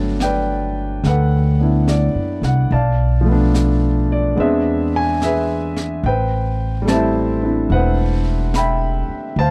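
A jazz ballad excerpt at 72 BPM in a swung 4/4, intimate and romantic, where a warm, up-front grand piano accompanies through Gmaj9, Bm7b5, E7b13 and Am9 over a woody, thumpy, up-front pizzicato upright bass, while a dark, smooth brush kit with a high-tuned snare and hi-hat joins at 0.2 s, the whole captured in a dry, close 1970s-style studio sound.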